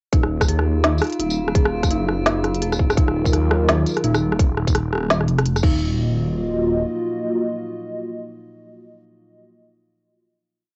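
A swirling, phased, detuned saw bass drives this dark, spacious half-time drum and bass piece in Eb minor at 169 BPM, with chopped phrases over a tight layered kick and a sparse kit of woody snare, smooth hats, rim, tambourine and crash, while an eerie warbling synth bell loops a 6-step arpeggio drifting against the bar, a faint metallic drone holds a high note, and a moody analog pad pumps in at 3.0 seconds to carry the final hit from 5.8 to 8.7 seconds before ringing out at 9.4 seconds, all softened by a lo-fi cassette sound.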